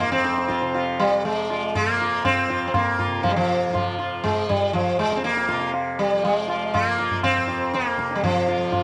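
A plucked sitar, a softly plucked tanpura drone and low-tuned tabla sound together from the first moment in this introspective, meditative Hindustani classical passage in 5/4, cut from a longer piece. Up front, the sitar carries the melody with a round, buzzing tone, its sympathetic strings shimmering and a touch of tape echo trailing its notes. Beneath it the tanpura hums a quieter, warm drone, while the tabla rings close and dry, all set within a moderate plate reverb.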